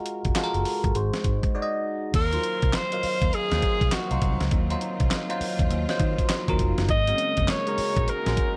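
A swung 16th-note groove at 101 BPM drives this punchy, confident new jack swing R&B cut in Eb dorian, where a gritty, compressed boom bap drum kit with a thumpy kick, handclaps and crash sits up front beside a round, foam-muted vintage electric bass and a bell-like tine electric piano treated with phaser, and after a brief break at 1.5 seconds a lush, distant bowed string section and a bright alto saxophone melody with light vibrato and delay enter around 2.1 seconds in a dry mix.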